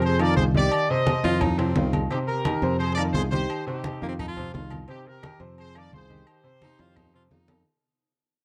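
A straight 4/4 salsa groove at 173 BPM drives this fiery, passionate fragment: a punchy, up-front horn section carries the melody, a smooth baritone saxophone adds a second line from 1.2 s, and a worn grand piano and a bright, direct fingered electric bass cycle through Fm7, Cm and F5, while low-tuned background congas, ringing agogo bells and timbales with drum fills near 1.2 and 6.8 s, and very quiet woody claves from 2.5 s fill out the percussion, all in a dry, close 1970s-style studio sound that fades throughout.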